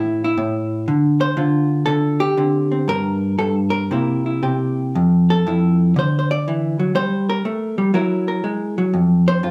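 A swung eighth-note lilt at 120 BPM in 4/4 drives this short solo jazz excerpt, though the time also stretches and breathes in a loose rubato. A lone vintage hollow-body electric guitar carries everything from 0.0 to 9.5 seconds, its clean, picked tone dark and compressed, ranging from F2 up to D5 and sitting up front in the mix. The mood is swinging and playful, moving from an unaccompanied opening through Dm7, C7 and Fmaj7 before passing through D, Gm and Gb9 and settling on F5 near 8.9 seconds. A wet club reverb places the listener further back in the room, giving the guitar a lively sense of space. Cut from a longer piece, the passage feels like a brief glimpse into an intimate late-night set.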